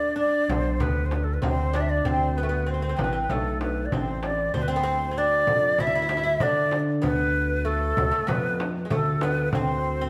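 A breathy, bright ney with vibrato carries the melody up front over a woody, fretless oud second line and a very quiet, close and dry clay darbuka, joined at 0.5 seconds by a smooth synth bass with sawtooth tone and ring modulation and a small, saturated frame drum in the background, in this hypnotic, melancholic fragment of a Turkish makam ensemble playing live in a wet stone room.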